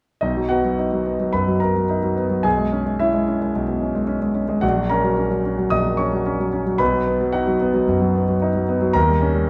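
Classical virtuoso piano study, heroic and sparkling in mood, heard in a brief passage cut from a longer work. A single concert grand carries everything from 0.2 to 9.5 seconds, its part reaching from deep bass notes up into the high register, shaped with a flexible rubato feel in common time. The piano sounds intimate and natural, placed up front, with the mechanical action noise of the instrument clearly audible beneath the notes. The harmony moves from B through C#m7/B and F#/A# back to B before landing on D#7 near 8.9 seconds. A stone-room reverb with a one-second tail surrounds the playing, and the overall production leans dark and warm.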